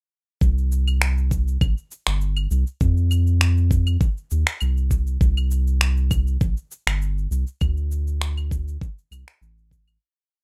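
A round, deep analog bass carries a dark, sustained dub-style line through this relaxed sunset chillout piece at 100 BPM with a slight swing on the 16ths, sitting up front alongside a soft, knocking electronic kick and a light lounge beat of electronic cabasa, claves and finger snaps set in small-room ambience, in a dry, rough home-demo mix that fades out from 6.8 seconds to its close at 10.0 seconds.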